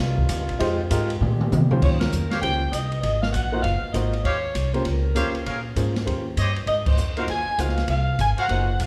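A warm, up-front saxophone section carries the melody from 1.8 seconds in this brassy, energetic big band swing excerpt at 198 BPM, over woody pizzicato upright bass, a dark, boomy jazz drum kit with a fill at 1.2 seconds, a natural baby grand piano, a tight trombone section holding clear chords in the background until 1.8 seconds, and clear, soft-attack trumpet stabs, all set in a moderate concert-hall reverb as the harmony moves through Eb13, Ab13 and Bbm7.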